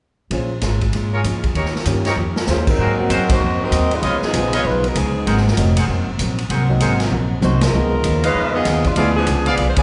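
A swinging 4/4 at 194 BPM drives this energetic big band jazz excerpt, with a distant, roomy drum kit with boomy kick and a woody pizzicato upright bass up front from the first moment, while a dark, clean hollow-body electric guitar and an intimate grand piano, its action noise audible, sit in the background. Roomy trumpet section stabs arrive at 1.1 seconds, and after a drum fill the tight, smooth-topped saxophone section takes the melody at 2.5 seconds with light vibrato, punctuated by band accents and a second fill around 7.6 seconds. The whole band sits in a wet recital-hall reverb with a dulled top end, and the chords move from Bbm7 through Ab9 and Db9 to a closing Ddim7.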